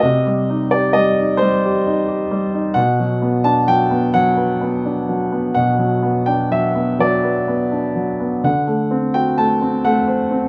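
A baby grand piano plays alone from the first moment: a tender, peaceful classical solo in a lyrical 6/8 at 43 beats per minute, shaped with rubato. Its warm, natural tone sits up front, captured by close, detailed microphones with light reverb, as the harmony moves from C minor to B minor add eleven at 2.8 seconds and D7 at 8.5 seconds within a range from B2 to A5. Tuned to A4 = 436 Hz, this 10.5-second passage from a longer piece holds a calm, intimate glow.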